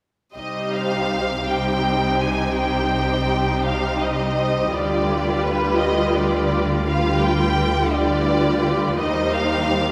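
A solemn, melancholic string orchestra opens at 0.4 seconds with every section sounding together in a slow romantic movement in 12/8, its pulse stretched freely with rubato. Up front, the first violins carry the melody with a smooth, even line and lush vibrato, while a second violin section adds an expressive, rich second line just beneath it. The violas fill the middle with warm accompaniment, their bowing colored by vibrato and portamento. Low in the texture, the cellos sit in the background with soft attacks, and the double basses sound distant yet expressive, together anchoring the harmony as it moves from minor tonic through a dominant seventh toward a closing return to the tonic. A scoring stage reverb with a long, wet tail of 2.1 seconds bathes the ensemble, and the passage is cut from a longer piece.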